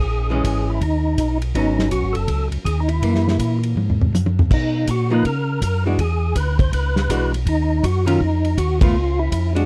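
A dark production with light reverb frames this soulful, bluesy soul jazz organ trio at 162 BPM in swung 4/4, where a fat, lightly overdriven tonewheel organ with percussive third-harmonic attack, key click, chorus vibrato and a slow rotary speaker carries the melody over a round, mellow organ bass line, while a clean, hollow-body archtop guitar plays picked accompaniment and a dry soul drum kit with a tight kick, a medium-tuned snare, hi-hat, ride, crash and toms adds a fill from 3.8 to 4.5 seconds before a band accent at 8.8 seconds.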